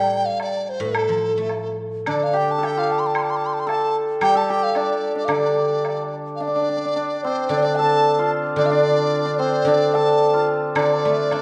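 Chinese traditional chamber music with a wistful, graceful mood and a free rubato feel, this excerpt places a mellow, hollow large bamboo dizi with a buzzing membrane and vibrato up front on the melody, over a shimmering hammered dulcimer second line and a silvery, ringing guzheng accompaniment played with fingerpicks, while a woodblock sounds from 0.4 to 6.0 seconds and returns at 10.8 seconds, all set in a moderate recital hall reverb.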